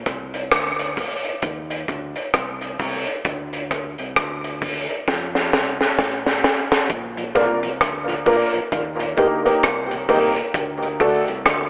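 A round, dark fingered electric bass opens this laid-back, hazy dub reggae excerpt at 66 BPM in Bb major, joined almost at once by a crunchy, gritty breakbeat kit with a high-tuned snare, tight kick, rim clicks and hi-hat sitting up front, all swung on the sixteenths, with a drum fill closing the opening break. At 7.2 seconds a mellow tonewheel organ with slow rotary speaker and dub echo slips in at the back. A worn, woody, slightly detuned upright piano adds dark, long-sustaining stabs with its own dub echo as the chords move through Bb, Eb and D, the whole mix washed in wet spring reverb and a thin, telephone-like tone.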